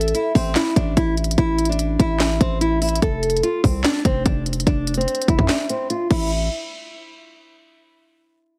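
A punchy, heavy 808-style bass anchors this dark, hard-hitting trap clip, its sine tone carrying a noise layer with a fast attack and a decaying tail, placed up front. An electronic, produced trap kit drives a half-time feel with a hard-clipped kick, sharp snare, crisp hi-hats, handclaps and crash cymbal. A small, fingerpicked nylon-string guitar with fresh strings carries the melody over A5 and F5 chords, treated with a low-pass filter sweep and delay. The kick drops out from 5.5 seconds, and the guitar, drums and bass all stop by about 6.5 seconds, leaving a short chordless stretch. A digital ambience with a heavily compressed, radio-like character frames the sound.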